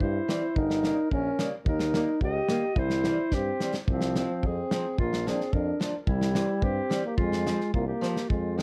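A dark, softly reverberant production frames this short, jolly cut from a longer alpine folk dance tune in F minor, moving at 108 BPM in a straight 2/4. A clear euphonium with a light vibrato and a vintage, classical-style voice carries the melody up front, while a clarinet with a soft attack and smooth top plays a second line coloured by tape echo. Beneath them, a clear tuba holds the bass with a gentle onset, and a picked, boxy ladder-braced acoustic guitar joins at 0.3 seconds with accompaniment. A loose kit recorded in a small room, with a tight kick, a medium-tuned snare, a rolled-off top and hi-hat, sits up front and adds fills around 3.3 seconds and again at 8.0 seconds. The harmony moves through C, Gdim, Eb, Fm/C and Bb before settling on Fm, giving the festive band sound a slightly wistful minor-key colour.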